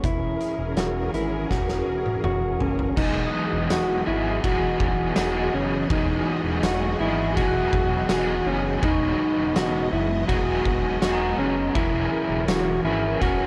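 Dream pop at 82 BPM in E lydian, this ethereal, dreamy excerpt from a longer piece opens with a mellow, dark electric guitar playing fingered arpeggios through lush chorus and digital delay over a vintage string machine's slow-attack viola chords, a glossy chorused synth bass and an oversized, low-tuned kit with a boomy kick, dark cymbals and a gritty, pumping room sound, whose fill runs from 1.5 to 3.0 seconds. At 3.0 seconds the harmony settles from F#9/E onto Emaj9 as a crunchy overdriven guitar joins with tremolo and analog chorus, and from 3.3 seconds a bell-like glockenspiel struck with soft plastic mallets rings faintly in the background through digital delay. Light small-room reverb and a worn cassette warble with drifting pitch give the whole recording a hazy, faded character.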